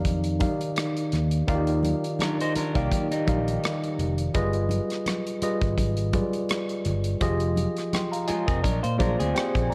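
The recording has a dark, softly reverberant studio sound, with the tine electric piano and drums placed up front in a short excerpt cut from a longer piece of lush 1970s-style soul. At 84 BPM in 4/4, with a light swing on the sixteenths, it moves at a smooth, romantic pace in Eb major, tuned slightly flat to A4 = 437 Hz. A worn, lightly overdriven electric piano, slightly out of tune and heard through its built-in speakers, carries the chords from Ebmaj7 through G7b9b13 and Fm9 to Bb7, adding a fill from 7.9 seconds. A fingered, amped electric bass sits beneath it, while a studio drum kit with a punchy kick, rolled-off top, hi-hat and rim click holds the groove, and very quiet, damped congas with a thick-skinned, saturated tone are played with soft hands. From 2.2 seconds an electric guitar through a small old amp plays a riff with a slightly broken-up, compressed, lo-fi warmth.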